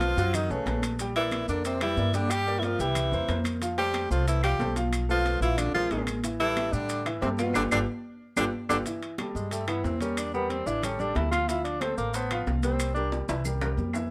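Afro-Cuban jazz at 183 BPM, sophisticated and sunny, this excerpt sets an up-front tenor saxophone melody with plate reverb, soft attacks, scooped notes and vibrato over a second, vintage-toned tenor line, natural baby grand piano, a woody pizzicato upright bass on steel strings, and percussion of high-tuned ringing congas, metal-shell timbales, close claves and grainy maracas in a small room, with a band accent from 7.5 to 8.9 s giving way to a tenor solo and a drum fill at 13.1 s.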